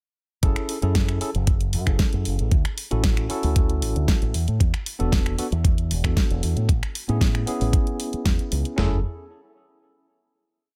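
A gritty, overdriven sampler-style drum kit starts the piece at 0.4 seconds with a thumpy four-on-the-floor kick, floor tom and snare. A layered electronic pop kit enters at the same moment with a fat disco backbeat snare, finger snaps and closed and open hi-hats, while an up-front fingered electric bass plays a round, punchy, funky syncopated line through an envelope filter and tube saturation. A clean tine electric piano, also in from the start, adds syncopated rootless chord stabs with digital delay in a dry, cosmic, groovy nu-disco groove that moves through four chords before settling on a final chord at 8.8 seconds.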